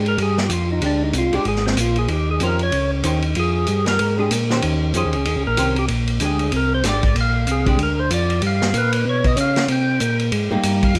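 A light reverb gives this short soul jazz organ trio cut a modest sense of space, and the mood is bluesy and swinging. An organ solo runs its full 11 seconds. The lead line comes from a fat, lightly overdriven tonewheel organ with third-harmonic percussion, vibrato and a slow rotary speaker. Beneath it, a second, smooth and clean tonewheel organ sits up front and supplies the bass, also through a slow-turning rotary speaker. A dark, clean, picked hollow-body archtop guitar comps until 7.8 seconds and returns briefly near the end. Meanwhile, an acoustic vintage drum kit with dark cymbals, a punchy kick and a rolled-off top swings on hi-hat, ride, snare and kick through harmony built on Bb13 and Eb13, with a G7#9 and a Cm7 near the close.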